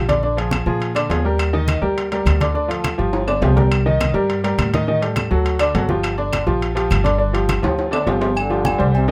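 A bright, slightly detuned upright piano sits up front in this passionate, danceable salsa excerpt, its intimate sound carrying audible action noise and long sustain as it plays the accompaniment. Beside it, a dark, thumpy upright bass on gut strings is played pizzicato, also close and prominent. Low-tuned congas with a thick skin sit in the background, with ringing, vintage-sounding timbales and agogo bells and woody claves heard from a live room. Drum fills break in at 3.1 and 7.6 seconds, and the harmony moves through chords such as Ebmaj7, Cm7 and Gm7. At 8.4 seconds a tight, punchy trombone section with a smooth top enters for a brief second line, all under light reverb as the cut ends.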